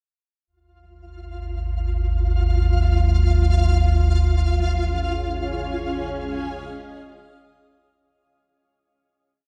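Dark and unsettling, this short dark ambient drone piece drifts in free time, tuned to A4 = 441 Hz. A grainy, flickering texture holding a high note enters at 1.2 s, and an ominous, rumbling drone follows at 1.4 s, sitting up front with a lush chorus. A blurred, detuned granular cloud pad arrives at 4.9 s with slowly shifting chords, as the harmony moves from G#5 to C# in a light room before a fade-out from 4.2 s to the close.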